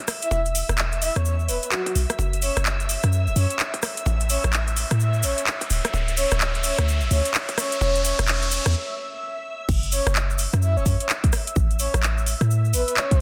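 UK garage in a moody, skippy two-step groove at 128 BPM with swung 16ths, this excerpt opens on silky, vintage string-machine chords colored by phaser, ensemble chorus and sidechain pumping, while a breathy, flute-like synth lead with vibrato, subtle chorus and tape echo carries the melody. A punchy electronic kick and a tight, sine-based 808-style bass sit up front beside a tape-warm house kit of metallic hats, handclaps, rim clicks and crash, with a grainy cabasa in the background. An electronic riser builds from 3.9 seconds into a short break at 8.8 seconds before the drop lands at 9.7 seconds on a C#m add11 chord, all under light reverb and a dense, heavily limited master.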